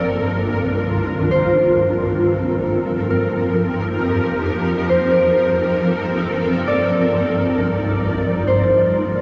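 Hip hop in free time and G minor, this hazy, spacious passage cut from a longer piece sets a bright, ringing concert harp melody with delay over a cloudy, evolving, blurred granular pad of detuned sine tones that sustains full-bodied chords with ensemble chorus through the whole 9.2 seconds, moving from Cm11 to Gm11 at 1.3 seconds and through F9sus4, all soaked in a huge ambient reverb for a dreamy mix.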